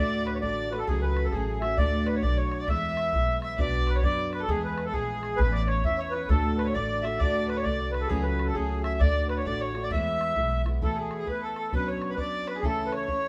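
A swung 2/4 Celtic polka bounces along in this cheerful, lively folk fragment, with a sweet, reedy accordion carrying the melody up front with light tremolo tuning, a bowed fiddle of smooth gut-string tone tracing a quieter second line, a fingerpicked steel-string acoustic guitar with audible finger squeak filling out the accompaniment, a woody, growly pizzicato upright bass that drops out at 10.8 seconds, and a boomy, close bodhran sitting in the background, the band heard together in a moderate stone room.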